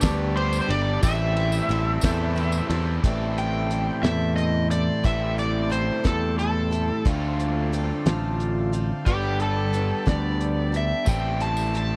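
A dry, close recording in a 1970s studio style, this short excerpt of reflective, dusty folk rock and heartland rock moves at 60 BPM in a 6/8 feel in A minor, with a cloth-damped, thuddy drum kit of fat snare and dark cymbals and a bright, punchy picked electric bass up front, while a shimmering, octave-doubled twelve-string acoustic guitar and a double-tracked, crunchy overdriven guitar riff play alongside them. A very quiet, reedy accordion holds sustained chords, and a jingly tambourine appears only from 0.0 to 2.7 seconds and again near 11.1 seconds. An overdriven slide guitar carries the melody from 0.4 seconds and stands out with a solo from 3.0 seconds over chords moving from Gadd9 and Am7 to Dm7 and back.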